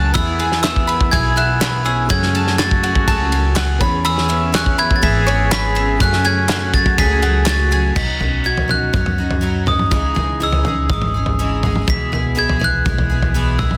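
A bright, sparkling glockenspiel struck with hard plastic mallets carries the melody through a digital delay, leading this hopeful, nostalgic indie folk piece in E major at 123 BPM, with a distant, mellow trumpet on a second line, shimmering twelve-string guitar, picked double-string mandolin arpeggios, a felt-muted upright piano with audible action noise, and a flute-like tonewheel organ holding very quiet chords through a slow rotary speaker. Underneath, a woody, thumpy pizzicato upright bass and a loose, up-front drum kit with a punchy kick drive the straight 4/4 groove, while hollow group handclaps sit in the background until 7.6 seconds. At 8.0 seconds the trumpet, piano, mandolin and organ have dropped away, and a fingerpicked steel-string guitar with finger squeak joins the glockenspiel, twelve-string, bass and drums, all in light reverb and small room ambience under a dense, heavily limited master.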